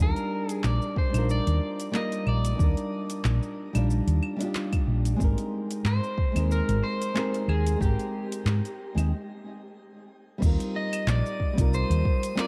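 A twangy, slightly broken-up electric guitar melody and a dark, fingerpicked nylon-string accompaniment, both bathed in tape echo and shimmer reverb, open this sunny, smooth sunset chillout excerpt in Eb major at 92 BPM with a light 16th-note swing alongside a round, hollow-body woody fretless bass up front with subtle chorus. They are soon joined by a tape-warm deep house kit of metallic hats, shaker, claves, handclaps and crash, and a deep electronic kick from 1.0 s. A short break comes at 9.1 s before a glassy, drifting glass-harmonics texture appears in the background at 10.6 s as the chords move from Ebmaj7 through Abmaj7 to Eb69.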